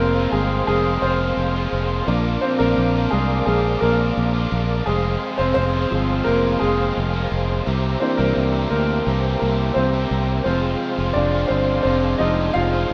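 A clear, open baby grand piano with long sustain leads this dramatic, earnest piano-driven pop excerpt at 86 BPM in 4/4, carrying a solo across the full 12.9 seconds over a round, up-front fingered electric bass, a bright, overdriven double-tracked guitar riff, and smooth tonewheel organ chords with chorus vibrato, key click and a stopped rotary speaker sitting in the background, all moving through Fm, Bb and C7 in a lightly reverberant, rough home-demo mix.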